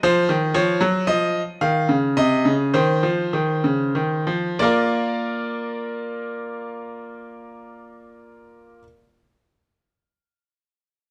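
Serious and driving, this baroque-style two-part invention for grand piano moves in a straight 4/4 at 46 to 60 BPM, slowing down over its first 4.6 seconds. The solo piano has a bright, brilliant tone, open and up front, and it spans C3 to F5 as it plays from the start until 8.8 seconds. The harmony opens on F5 and shifts to B-flat as the second section begins at 4.6 seconds. Close, detailed microphones capture the instrument inside a moderate recital hall reverb. The passage is cut from a longer piece.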